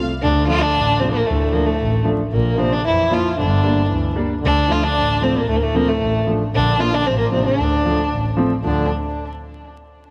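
Heard from further back in the room through a moderate plate reverb and a layer of vinyl crackle, this short klezmer fragment, cut from a longer piece, feels festive yet bittersweet in its straight two-beat metre. A single bowed violin carries the melody up front, its dark, woody tone softened by a sul tasto touch and vibrato, with a tape echo trailing behind it. Beneath it, one bowed double bass sits equally forward, smooth and even, with its own vibrato. A warm, close-miked trombone in a classical style traces a second line in the background, while an upright piano fills in the accompaniment with long, ringing sustain. All four parts play together from the opening until 8.9 s.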